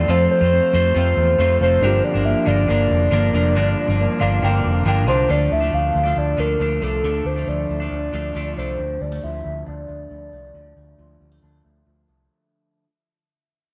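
Indie pop at 138 BPM in D minor, restless and wistful, cut from a longer piece, with a hollow, warbling clarinet-like synth lead carrying the melody through chorus and slapback echo over a bright, twangy twelve-string electric guitar and a slightly broken-up guitar from a small old amp playing arpeggios with subtle chorus. A dark, round, foam-muted fingered electric bass sits punchy and up front, while a woody, boxy upright piano with audible action noise stays in the background and adds a fill from 4.0 to 5.3 seconds before dropping out. The harmony moves from F to Gm7 and settles on Dm as the track fades out from 5.3 seconds, all bathed in a moderate echo chamber reverb.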